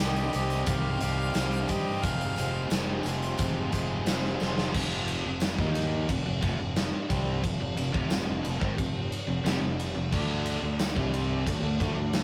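A straight 4/4 pulse at 89 BPM drives this brooding, driving classic rock piece in F dorian. The big, up-front acoustic drum kit, with a tight kick, medium-tuned snare and rolled-off top, works crash, hi-hat, ride and snare from 0.2 seconds, and a short drum fill closes the opening section, while a very quiet, jingly tambourine sits close behind it. A biting, bright overdriven guitar, picked and double-tracked, carries the riff throughout, and a fingered electric bass with an overdriven fuzz tone, both direct and amped, holds the low end. A clear solo harmonica with light vibrato, scooped notes and a smooth top sings a short melody that stops at 2.7 seconds, while a very quiet, lightly overdriven tonewheel organ with key click and slow rotary speaker sustains chords in the opening and returns at 10.1 seconds. The harmony moves from Cm to Fm before settling into F5 and D5 power chords. The whole has the rough feel of a rehearsal-room recording, with warm saturation and light reverb.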